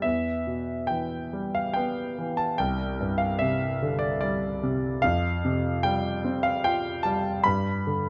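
Melancholic and dark, this brief classical fragment, cut from a longer piece, sets a lone concert grand piano in C major at 73 BPM in a rubato 3/4 with uneven beats, its clear, worn tone spanning C2 to B5 with deep bass and short sustain, placed up front and present under close, detailed microphones and light reverb as the harmony moves from Em through Csus2 and Fsus2 to G across 8.1 seconds.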